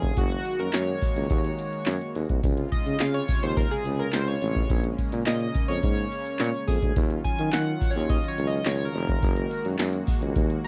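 An electro analog drum machine opens this early-eighties boogie funk excerpt, its deep kick, punchy snare, handclaps and metallic hats set up front with a short room on the snare, clap and hats, alongside a chorused polysynth, a brassy analog pad and a clear tuba carrying the bass. The mood is late-night and danceable, with a straight 4/4 feel. The chorused polysynth takes a solo throughout, a retro, glossy voice blending pulse, sawtooth and triangle waves with a sub octave, pulse-width modulation and a filter sweep, its bright tone sitting above the rest. Beneath it the bold pad holds sustained chords built from detuned sawtooth waves, with a soft attack, a filter swell and chorus. The tuba plays with a present, pop-style punch up front, while a jingly acoustic tambourine joins at 0.2 seconds in the background with a live-room sound. Chords move from Gb69 through Dbmaj7, Bbm7 and Ebm9 and back, all captured in a dry, close 1970s-style studio recording with little reverb.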